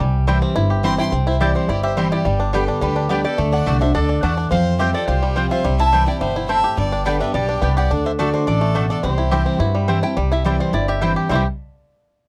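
Bluegrass with a driving, lively energy, cut from a longer piece. Upright bass sits up front with a woody, thumpy, dark gut-string pizzicato, under a dreadnought steel-string guitar picking the accompaniment and a twangy, percussive banjo rolling arpeggios with fingerpicks. A double-strung mandolin adds picked stabs from 0.3 seconds, and a bowed fiddle with a clear, smooth top and light vibrato enters at 0.8 seconds, playing a short solo in the opening before carrying an earthy second line. At 1.0 seconds a lap resonator guitar, played with fingerpicks and slide, takes the melody in a metallic, nasal voice. The harmony cycles through C, G, D and Fsus2, and light reverb and a cassette-tape character color the ensemble.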